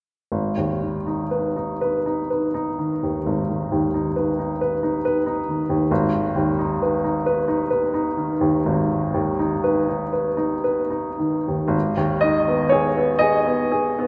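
A clear, woody upright piano sits up front in this short fragment of a romantic classical nocturne, playing alone from 0.3 seconds to its close at 14.1 seconds. The mood is wistful and melancholic, with the slow 12/8 metre bending freely under a rubato feel. The piano's smooth, vintage tone reaches from deep in the bass up into its middle register. A wet concert hall reverb gives the instrument a lingering, spacious halo. The opening passage gives way to a contrasting idea at 11.7 seconds, just before the fragment breaks off.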